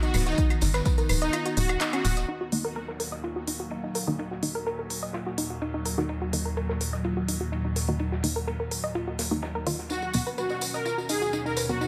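Set in light reverb and digital ambience, this hypnotic, dark melodic techno excerpt rides an evolving, morphing wavetable pad with phaser and sidechain pumping, woody wave-folded pluck arpeggios with chorus and dub echo, a deep house kit of claves, handclaps and smooth hats, and a big rock kit's fat snare and ride in the background, while a punchy electronic kick, a tight sawtooth sequencer bass and a jingly tambourine drive the opening until the bass stops at 2.2 seconds, a muted, gritty filtered dub chord stab enters at 2.5 seconds, and the soft-attack, detuned supersaw melody with tape echo returns at 9.9 seconds alongside the tambourine.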